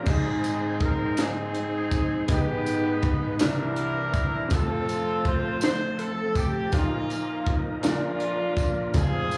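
A slow 6/8 sway at 54 BPM, counted in dotted quarters with a straight feel, carries this uplifting, reverent gospel passage, cut from a longer piece. A crisp, saturated acoustic drum kit sits up front in a small, pumping room, with a high-tuned snare, tight kick, hi-hat and crash cymbal, while a jingly, close and dry tambourine sits in the background; both enter at 0.1 s. A warm, up-front horn section with light vibrato and a smooth top carries the melody from Bb3 to C5. It is supported by a brilliant, open baby grand piano reaching down to F1, and both share a slapback echo. Behind them, a thick, overdriven tonewheel organ holds sustained chords through a fast rotary speaker and chorus vibrato, with a gritty, percussive edge. The harmony moves from Ab through Abm, C9 and F to a Bbsus4 that settles on Bb, all heard with light club reverb as if through the PA at a live gig.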